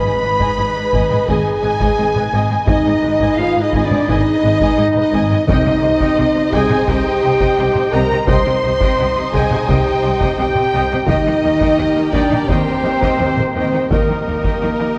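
A straight 4/4 pulse at 86 BPM drives this dramatic, heroic cinematic orchestral excerpt: a close, dry taiko ensemble struck with heavy sticks enters at 0.4 seconds, and a very quiet timpani sounds briefly at 5.5 seconds as the harmony moves from Abm through Cm to Eb. A focused, lush violin section carries the melody, shadowed by a pure, straight-toned concert flute and a very quiet, smooth second violin section. Beneath them a mellow French horn section holds prominent sustained chords over a background string section and violas, while cellos and double basses anchor the bass with rich vibrato, all set in a moderate concert hall and coloured by worn cassette tape with warbly pitch drift.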